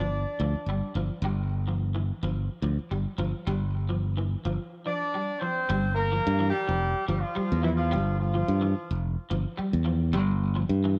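Intense and driving, this afrobeat excerpt moves in a lightly swung sixteenth-note groove in 4/4. A bright, growly fingered electric bass sits up front and carries the low end from the start until 10.9 seconds. An electric guitar at the edge of break-up plays twangy, picked arpeggios in a narrow register throughout, its slightly broken-up tone thickened by an ensemble chorus. A warm, roomy pop-style horn section, doubled in octaves, states the melody in a brief opening burst and returns from 4.9 to 9.0 seconds, sounding both up front and somewhat distant. The harmony rests on a G5 chord before shifting to Gm7 at 5.7 seconds, and a moderate echo-chamber reverb gives the whole recording a studio sense of space.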